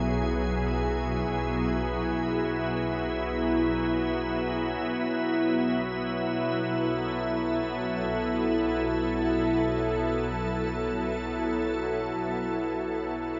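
A soft, organ-like pad of pure, detuned sine tones opens this reflective ambient excerpt, sitting bright and up front with ensemble chorus and its own reverb, over a bowed double bass section with a reedy gut-string tone and light vibrato that fades out across the full 13.4 seconds. A very quiet, mellow concert harp rings out thumb-plucked arpeggios from 0.1 to 2.2 seconds, while the pad's sustained chords move from E69/B to B5 at 4.8 seconds. A huge, wet reverb with a 7.6-second decay gives the recording a spacious air.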